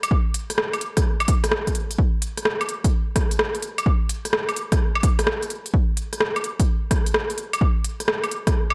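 A layered electronic garage kit opens this short, soulful UK garage cut, with crisp hi-hats, rim clicks and woodblock sitting up front from the very start. A punchy analog kick arrives at 0.1 s and carries on to 8.5 s, its electronic thump captured in a small room and placed close to the listener. The groove runs in 4/4 with a heavy swing on the sixteenths, giving the whole pattern a skippy, shuffling lilt. The kit carries a tape-warm, produced sheen and the character of a large room, while the overall mix keeps reverb to a minimum. Lifted from a longer piece, the passage holds a single section that lasts until 8.7 s.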